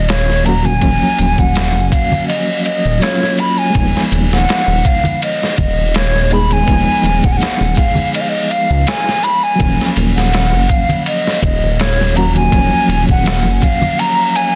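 A lightly swung 4/4 groove at 82 BPM drives this melancholic, brooding trip hop excerpt in Eb minor, built on a muffled, pitched-down sampler-style kit with a thumpy kick, medium-tuned snare, hi-hat and ride, while bright, close maracas and hard-handed congas sit beneath it. A deep, rumbling detuned saw bass with tube saturation holds the low end until 13.6 s, and a reedy electric piano with fast tremolo plays chords moving from Ebm7 to Fm7b5/Eb and back to Ebm7. Over them, an airy, hollow silver concert flute carries the melody with vibrato, roughened by 12-bit sampler grit and tape echo, set in light digital ambience and a dense, heavily limited master.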